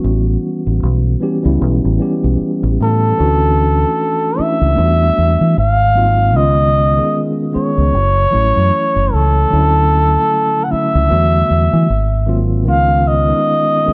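R&B and neo-soul at an unhurried 76 BPM in D major with a lazy sixteenth-note swing, this smooth, soulful excerpt sets a mellow tine electric piano and a deep, round, fingered dub bass under a cup-muted trumpet that enters at 2.8 seconds with a soft, breathy, veiled jazz solo touched by light vibrato, all colored by light studio reverb and the warbling pitch drift of worn cassette tape as rich chords like Dmaj7, Em11 and G#13 pass by.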